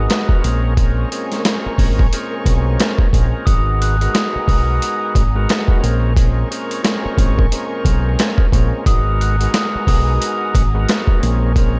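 A dry, close-sounding boom-bap hip-hop excerpt with a reflective, dark mood sets gritty, pitched-down sampler drums with a thumpy kick and high-tuned snare up front beside a round, punchy dub bass, while a thick overdriven organ on a slow rotary speaker and a smooth, distant string section hold minor ninth chords, and a mellow glockenspiel struck with rubber mallets rings through tape echo from 3.5 to 10.4 seconds.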